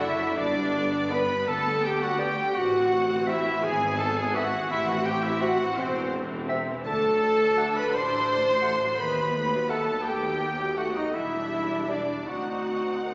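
A dark, tight French horn section holds sustained chords at the front of this tender, rubato classical passage in G major, moving in a slow 6/8 at 56 BPM (dotted quarters) while a very quiet, vibrato-rich violin section carries the melody and a second, smooth violin line moves alongside it. Around them, an airy flute section, a mellow cor anglais and a punchy clarinet weave second lines. A clear, distant trumpet adds stabs, and a very quiet bassoon and a rich viola section fill the accompaniment, while the tuba, cello section and double bass section anchor the bass through a progression from G to Am, E/G#, D and B7/D#, ending on D7b9 at 12.3 seconds, all set in a wet scoring-stage reverb.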